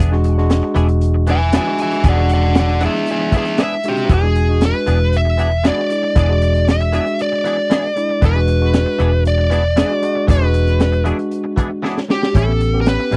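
A straight-eighth groove in 4/4 at 116 BPM drives this laid-back, gritty soul blues excerpt in E mixolydian, cut from a longer piece. A crunchy breakbeat kit, saturated and rolled-off on top, pairs a high-tuned snare and punchy kick with hi-hat, while a foam-muted, round vintage fingered bass sits up front on the low end. A bright tine electric piano fills in the accompaniment through its built-in speakers, and a twangy, compressed direct-recorded guitar with ensemble chorus adds quieter clean stabs. At 1.3 s a smooth, dark overdriven lead guitar enters with a picked solo, carrying the melody from G4 to G#5. The harmony holds on E7 until a drum fill at 11.8 s leads into a shift to A7 at 12.3 s. The dry, close 1970s-style studio sound keeps every part intimate and present.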